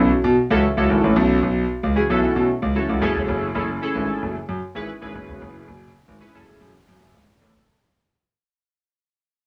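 Captured in a small room, this brief cut from a longer early-eighties boogie funk piece fades out across its full 7.5 seconds, carrying a late-night, danceable mood at 113 BPM in a straight 4/4. An intimate concert grand piano holds down the bass line in its deep low register, its action noise audible and its tone natural and up front. Above it, a glossy, warbling chorused polysynth with pulse-width modulation, ring modulation and a filter sweep sustains mellow retro chords that move from B9sus4 to F#m9 at 3.0 seconds.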